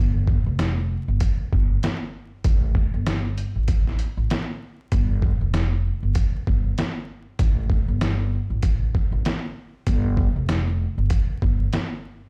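A sampler-style drum kit drives this tough, moody boom-bap hip-hop excerpt from 0.3 seconds: its pitched-down, muffled hits are overdriven and compressed, with a thumpy kick, medium-tuned snare and hi-hat sitting up front in a swung 4/4 groove. Beneath it, a woody, dark upright bass with gut strings is plucked low from the very start and also sits close and present. The mix carries vinyl crackle and the sound of a big system played in a bare stone room.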